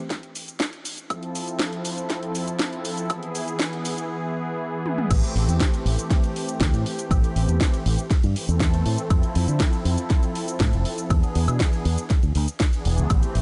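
Sensual and groovy, this nu-disco excerpt at 120 BPM in A minor opens with a punchy, overdriven electronic kick and a house kit of cracking snare, bright hats, cabasa, woodblock, toms and cymbals, adds a smooth, detuned sawtooth pad with chorus and tape echo at 1.1 seconds over Fmaj7 and E, then after a drum fill at 4.9 seconds drops at 5.1 seconds into a bright, up-front fingered electric bass with an envelope filter and sidechain pumping over Am7, Fmaj7 and E7, all in a dry, gritty mix with a dulled top end.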